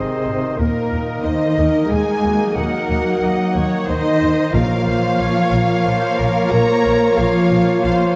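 An epic, heroic cinematic passage in three opens with nearly the full orchestra at once. A lush, bowed violin section carries the melody in the background, joined by a second violin line and a small, airy flute group, while violas fill out the accompaniment and mellow French horns hold sustained chords over a rich string section and distant, very quiet trombones. Trumpet stabs sit behind the texture, woody cellos and a focused double bass section (from 0.3 s) anchor the low end, and soft-mallet timpani with a round tone enter at 4.5 s, all inside a dark, reverberant scoring-stage sound.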